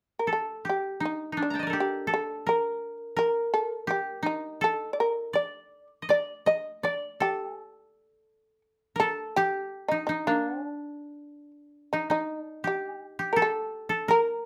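A moderate studio reverb frames this austere, calm fragment of traditional Japanese chamber music, moving in a rubato 2/4 at 83 BPM in the D miyako bushi mode. Up front, a mellow, buzzing, fretless shamisen carries the melody with a powerful, percussive plectrum-plucked tone, while a woody, dry koto played with fingerpicks adds a second line. Both instruments sound from the opening moments through to 14.5 s, and the music moves into a new section at 11.9 s.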